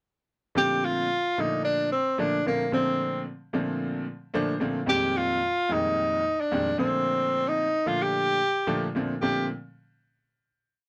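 A warm, subtone tenor saxophone sits up front with a motif-based jazz melody in song-like phrases while a brilliant concert grand piano with deep bass accompanies it with syncopated rootless chord stabs and a fill at 4.1 seconds, giving this short, intense, driving swing piece at 111 BPM a close, dry 1970s-style studio sound before it closes on a final chord at 9.2 seconds.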